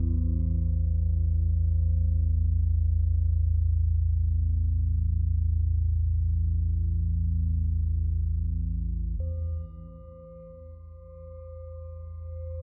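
A deep, rumbling drone and a quartz singing bowl sound together from 0.0 seconds in this cavernous, desolate piece of dark ambient music, cut from a longer work and moving in free time around A minor. The drone sits up front in the low register, ominous and warbling, with a vintage, detuned blend of triangle and sawtooth tones, a slow attack, long release, subtle chorus and its own built-in reverb. Much softer in the mix, the bowl rings on a single high note, pure and meditative, struck with a wooden striker and heard close and bright, its slow beating carried into a shimmer reverb while it fades out over the first 9.2 seconds. From 9.2 seconds to the close at 12.6 seconds, a filter sweep reshapes the drone. A moderate cathedral reverb places the whole sound in a vast, echoing space.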